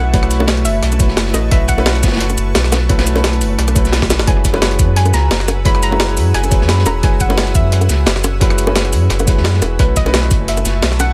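Swung sixteenths drive this lush liquid drum and bass excerpt at 174 BPM, where an overdriven, knocking electronic kick and a pitched-up, gritty jungle sampler kit with tape echo join a saturated breakbeat kit sitting in the background from 0.1 s, tight, dry bongos enter at 0.4 s and a drum fill lands at 3.9 s, while a deep sine sub bass with octave sits up front beneath an intimate grand piano with audible action noise and tape echo, a soft, round pluck melody with chorus and dub echo, and a shimmering, ethereal ambient pad in the background, over harmony moving from B9sus4 to F#9sus4 and back in an echo-heavy small room.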